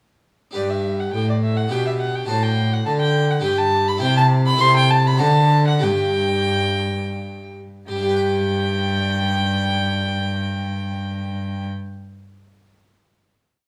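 A lightly reverberant small-room sound frames this short, serene and dance-like baroque-style sonata movement in G major and 3/4, where a close, warm, airy gut-string violin sings the melody at 83-104 BPM over a dark, smooth-topped cello walking and sustaining the bass and a full, brilliant harpsichord rolling chords, the music slowing from 3.2 to 7.9 seconds before settling on a final chord.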